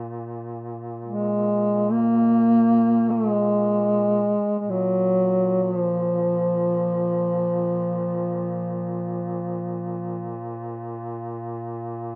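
A dark duduk carries the melody up front from 1.0 to 10.4 seconds, its soft-attacked, scooped notes and vibrato giving this Caucasian folk lament a longing, solemn voice in free time. Beneath it a warm duduk holds a low drone on Bb2 from the start, lower in level and also shaded with vibrato and scooped notes. Both sound distant and roomy within a moderate plate reverb, in a rough home-demo mix of a short passage cut from a longer piece, tuned to A4 = 439 Hz.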